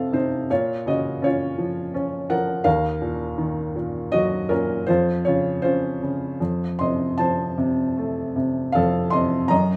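Melancholic and dark, this short lyrical classical excerpt in a rubato 3/4 features a solo felt-muted upright piano, intimate and boxy with short sustain and audible action noise, sitting up front in light reverb as it moves from F through Bbm, Ebm and Dbmaj7/F before coming back to F.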